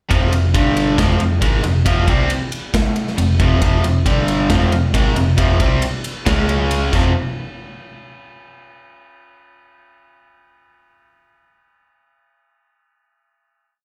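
This sounds like a live club gig heard through the venue's PA, with a light club reverb hanging around the band. It's a short, complete hard rock piece in F minor at 136 BPM in a straight 4/4, heavy and menacing in mood. A crunchy, overdriven electric guitar, bright and double-tracked with a slapback echo, sits up front with a power-chord riff moving through F5, G5, F minor and Db5. A picked electric bass, growly and amped, drives steady eighth notes and doubles the guitar riff down low. A big acoustic rock kit with a punchy kick, medium-tuned snare and bright crash and ride cymbals lays down a half-time groove. All three parts play the riff together from 0.1 seconds to about 7.1 seconds, and then a final hit rings out in the room until 8.9 seconds.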